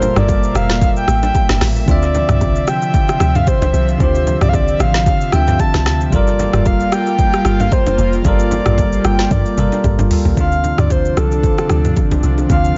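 A deep, round log drum bass with a fast, percussive attack anchors this late-night, soulful amapiano passage in D minor at 113 BPM, cut from a longer piece, alongside an up-front electronic kit with a woody snare, metallic hats and dub echo, plus very quiet, close and dry bongos and congas. A breathy, warbling flute-like synth lead carries the melody with chorus, vibrato and dub echo over bell-like tine electric piano and an airy, detuned pad that pumps with the sidechain through Gm9 and Dm9 chords. A drum fill at 9.3 seconds leads into a Dm7 shift at 10.4 seconds, all in a dry, echo-heavy mix with a dark top end.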